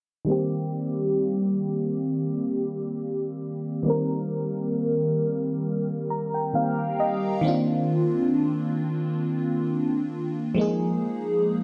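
R&B at a slow 67 BPM in C minor, this brief piece, cut from a longer work, carries a late-night, longing mood with a gentle swing on the sixteenths. A single FM electric piano with a soft pad layer plays alone from 0.2 to 11.6 seconds, spanning Eb3 to Bb5 and sitting up front in the mix. Its tone is dreamy and lush, with a fast attack and decaying notes, a noise layer, and a shimmer from chorus and phaser. A filter sweep runs through the opening passage until 7.4 seconds, and the piano adds a fill from 5.6 seconds just before the harmony moves from Cm7 to Cm11, later settling on Bb7sus4. A lush hall reverb and a low-pass filter give the recording a hazy, spacious finish.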